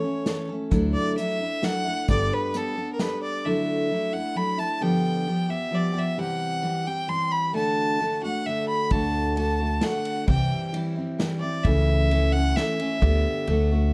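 A clear, focused fiddle with light vibrato sings up front across this nostalgic, peaceful acoustic folk excerpt in a straight 3/4 at 132 BPM, backed by a full-bodied picked steel-string guitar, a woody, thumpy pizzicato upright bass that drops out after 2.3 seconds and returns at 8.9 seconds, and a small-room drum kit played with bundle sticks under dark cymbals, all in a dark production with light reverb as the chords move from Dadd9 and Gadd9 through G7, C and D to A/C# and G/D.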